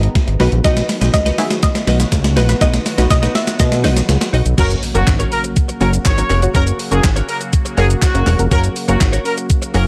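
Dance-pop with a driving, bittersweet mood, this clip opens on a soft, round plucked melody with phaser and tape echo over a resonant, warbling pad, a scooped clean guitar riff, a fat, detuned analog bass and a thumpy gated 80s drum machine with handclaps and shaker, a punchy chord stab joining at 0.4 seconds, before the drum fill build-up gives way at 4.6 seconds to a drop where a clear horn section takes the melody over a very quiet impact, all in a dry, gritty, saturated sound.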